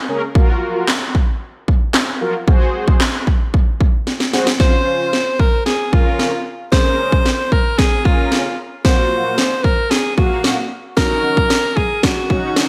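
Driving and bittersweet, this dance-pop excerpt at 113 BPM opens with mellow, detuned synth brass pumping under chorus over Gbmaj7 and Ab7 chords, joined at 0.4 seconds by a punchy, overdriven house drum kit of handclaps, kick and cracking snare with gated reverb, before a drum fill leads at 4.6 seconds into a build-up where a breathy, close-miked alto saxophone takes the solo melody through digital delay in a bright 1980s-style production.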